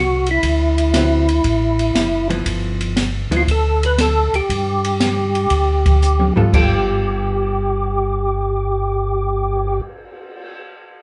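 Soul jazz organ trio at 118 BPM in 4/4 with a swung eighth-note feel in G mixolydian, cut from a longer piece, with a greasy, soulful mood. A percussive tonewheel organ carries the melody in a fat, clean voice with third harmonic percussion, key click and a slow rotary speaker with chorus vibrato, while a second, mellow tonewheel organ plays the bass line in a round, dark tone through the same slow rotary and chorus vibrato, both sitting up front. An acoustic jazz drum kit enters at 0.3 seconds with dark, smooth cymbals, a high-tuned snare and a boomy kick, and a hollow-body electric jazz guitar joins at 1.0 seconds with clean, fingered, compressed accompaniment. The harmony moves from D13 to G13, and a drum fill at 6.0 seconds leads into a new section on G9. The band plays live together in a small room with a moderate, short reverb and a soft top end.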